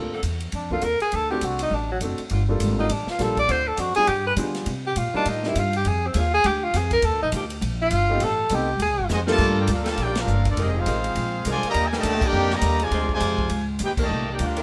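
Light reverb sits over this big-band swing cut, and its mood is dramatic and sultry. It moves at a brisk 204 BPM in G minor with a swung feel. A mellow tenor saxophone carries the melody from 0.5 seconds, its subtone, soft attack and scooped notes sounding roomy yet up front. Beneath it, a woody, thumpy upright bass plays pizzicato and an intimate grand piano comps with audible action noise. A saxophone section holds sustained chords in the background. At 9.1 seconds a drum fill hands the tune to a tight trumpet section with vibrato and a smooth top, shadowed by a trombone section with light vibrato on a second line, while the airy, polished drum kit's punchy kick, snare, hi-hat, ride and crash cymbals drive the band accents through to the end at 14.6 seconds.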